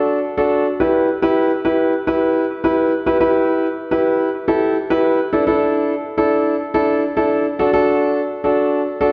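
Pop fragment, driving yet melancholic, in which a solo concert grand piano with a warm, open tone, deep bass and long sustain sits up front while a wet scoring-stage reverb surrounds it, moving from D and E minor through a suspended A chord before returning to D, all cut from a longer piece.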